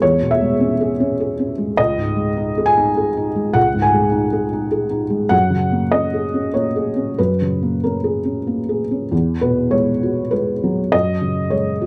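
In a rubato three-four lilt, this melancholic, reflective neoclassical minimalist piece unfolds as a fragment cut from a longer work, carried by a solo felt-muted upright piano. Thick felt gives the instrument a soft, mellow, intimate tone with short sustain; it sits up front and spans C#2 to G#5 as the harmony drifts through E6, C#sus2 and F#add9, before a new passage at 9.1 s turns to Eadd9 and F#sus2. A moderate studio ambience and a dark, warm production frame the sound.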